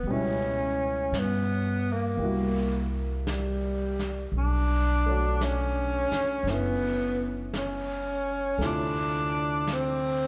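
A roomy concert-hall reverb surrounds this tender, intimate jazz ballad excerpt at a slow 56 BPM swing, where a breathy, subtoned tenor saxophone carries the melody up front with soft attacks, vibrato and scooped notes over a warm baby grand piano's short-sustained chords, a woody pizzicato upright bass, and a vintage brush kit with a rolled-off top that joins at 0.1 s on brushed snare and hi-hat, moving through C#m7b5, C7#11, Bm9 and Dm7.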